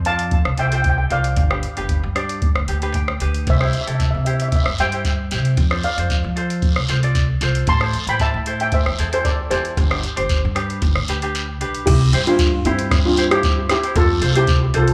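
A straight 4/4 groove at 114 BPM drives this carefree, bouncy calypso in C major, cut from a longer piece and heard as a live gig through a club PA with studio reverb. Up front, a soft vintage rhythm box sets the pulse with a deep analog kick, metallic hi-hat, rim click and crash cymbal, while a pizzicato upright bass on gut strings plays dark, woody, thumpy lines beneath. The lead steel pan, struck with soft rubber sticks, carries the melody in a shimmering, mellow voice placed close, with slapback echo and digital delay in a boxy small room. A light, fingerpicked ukulele adds acoustic accompaniment with its own slapback and slips in a brief fill at 2.7 seconds, and a raspy, band-limited guiro with slapback echo joins at 3.5 seconds. After a short break at 11.3 seconds, the harmony settles on C and then F as the passage closes.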